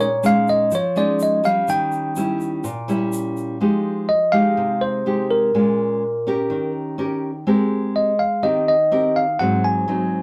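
A straight bossa nova groove in four sets the pace of this smooth, wistful passage, cut from a longer piece. A grainy egg shaker sits close and dry in the opening stretch, then drops out at 3.6 s, where the music moves into a new section. Up front, a bell-like tine electric piano carries the melody with a clean, direct tone, taking a solo over the first few seconds and continuing through to the end. Beside it, a nylon-string guitar is fingerpicked in a classical manner, giving a warm, acoustic accompaniment that spans low and middle registers across the full length. The harmony drifts through jazzy changes such as Bbm7, Eb7b9, Fm9 and Abmaj9 before resting on Ab7. The band sounds as if it is playing live together in a small room, with a modest, natural reverb around the instruments.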